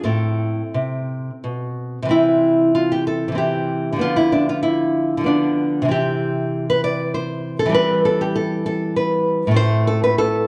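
A moderate recital-hall reverb surrounds a single nylon-string guitar placed up front, its acoustic tone dark, boxy and small. This is a short passage cut from a longer classical piece, a baroque-style dance in triple metre played with a flowing rubato. The fingerpicked guitar plays solo throughout the 10.5 seconds, ranging from A2 to D5. The mood is introspective and flowing, with a brief opening phrase giving way at 2.1 seconds to a restatement of the same material. The harmony moves from Am through C, Dm69, C and C/E before settling back on Am at 9.6 seconds.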